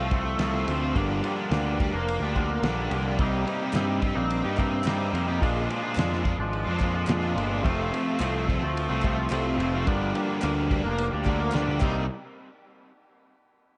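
Over a straight 4/4 pulse, this moody, bittersweet indie rock excerpt is anchored by a cloth-damped, thuddy drum kit with a fat snare, tight kick and dark cymbals, and a drum fill rounds out the groove from 11.5 seconds. A growly fuzz bass sits up front with a bright, amped edge, while two guitars each carry a riff: one biting and overdriven, treated with ensemble chorus and analog delay, the other clean and twangy, glistening in spring reverb. A crisp group handclap joins in the background at 3.7 seconds, adding a saturated snap beneath the band. The chords move through F, Gm7, Cm7 and Bb7 before cycling back and then dropping away at 12.1 seconds. The whole mix sounds as if played in a small room and dubbed onto worn cassette, with warbly pitch drift and a dulled top end lending it a hazy, nostalgic tint.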